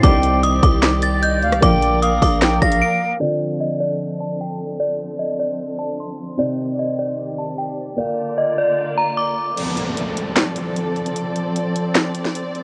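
A metallic, ringing FM bell carries the melody through this brooding, hard-hitting half-time trap excerpt at 151 BPM in D phrygian, with a reedy flute line and quiet warm string stabs at the start, a growling 808 bass and overdriven, gritty trap drums up front until 2.8 seconds, a dark piano and distant string chords beneath a filter sweep, and the drums returning with a downlifter at 9.6 seconds, all coloured by warbling old-tape drift and reverb.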